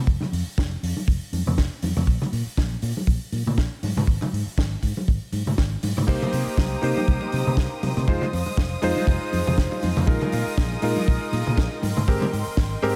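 A punchy, tube-saturated fingered electric bass opens this groovy, sleek nu-disco excerpt in C minor at 120 BPM with a swung 16th-note feel. It is joined almost at once by an up-front, dry, tight acoustic kick, a funk kit with bright cymbals and a high-tuned snare, and band-limited vintage congas in the background. At 6.1 seconds a clear, clangy electric grand piano with chorused unisons and tape echo and a distant, woody symphonic string section with vibrato and sidechain pumping enter over Cm7, Fm7, Bb7sus4 and Abmaj9, all set in light reverb.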